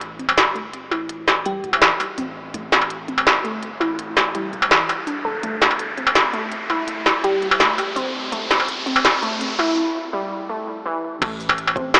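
An up-front industrial drum kit drives this tense, cinematic half-time drum and bass cut, its clanging snare, crisp hats, shaker, crash and struck metal ringing through a large room, while a deep, sine-like 808-style bass sustains low in the background. A warbling, dusty, nasal pluck spins lo-fi arpeggios through chorus, tape echo and a filter sweep, a riser climbs from 2.1 s toward a break at 9.8 s, and a sparkling, bell-like FM electric piano adds brief G4 touches coloured by phaser and 12-bit sampler grit. A layered, knocking electronic kick arrives at 11.2 s as the chords return to A minor, all bathed in a huge ambient reverb with an AM-radio tint.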